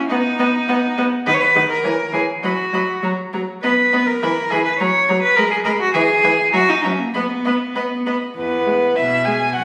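A rich, up-front cello carries the bass from 0.0 s in this lively, graceful classical-period movement for string quartet in B major, taken at 102 BPM in 2/4 with a rubato feel. Above it, the first violin sings the melody with a reedy, gut-string tone and light vibrato, while the viola, warm with a smooth top, sits close in accompaniment and stops at 9.3 s, and the second violin weaves its line in the background. Played in period style by single bowed players, the passage moves from its opening B chord through E, F#7 and back to B before a brief second section begins on E at 8.4 s, all heard through a phone in a recital hall with a wet, lingering reverb.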